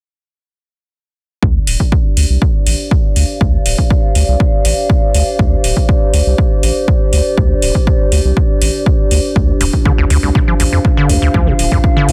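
This excerpt of driving, trippy acid house at 121 BPM opens at 1.4 seconds with a dark analog pad holding a Dm7 chord, a thick, saturated sub bass and a punchy, tape-warm electronic kick, with the pad and bass breathing under sidechain pumping and a filter sweep running across the sub bass. Metallic analog hi-hats, re-recorded in a small room, join at 1.7 seconds. From 2.2 seconds a warbling, nostalgic tape-like pad adds a lo-fi, chorused layer with its own reverb, sitting at the same quiet level as the moody, detuned first pad with its lush chorus. At 9.6 seconds a squelchy, resonant square-wave acid bass riff arrives up front, its hollow filter plucks pushed through overdrive, cassette tape colour and tape echo. The pentatonic D minor material is tuned slightly flat, and the mix is dry, dense and heavily limited in a modern way.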